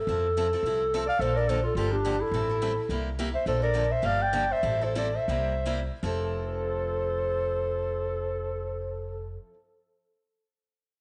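A swung 4/4 pulse at 149 to 213 BPM drives this lively cut of acoustic string swing in F major, and the tempo slows between 3.5 and 6.0 seconds. An upright bass sits up front, its pizzicato gut strings thumpy and woody, while a picked steel-string parlour guitar supplies the accompaniment with a bright, boxy tone and audible finger squeak. A clarinet carries the melody from the opening moment, dark and breathy with subtone, soft attack, scooped notes and vibrato, close-miked for an intimate, whispered jazz sound. At 1.1 seconds a second clarinet adds its own mellow, vibrato-touched line. The harmony moves through Fmaj7, Bbmaj7, Gm7, Am7 and C7 before returning home to Fmaj7. A moderate echo chamber reverb and small room ambience surround the group, and the top end stops at about 10.3 kHz.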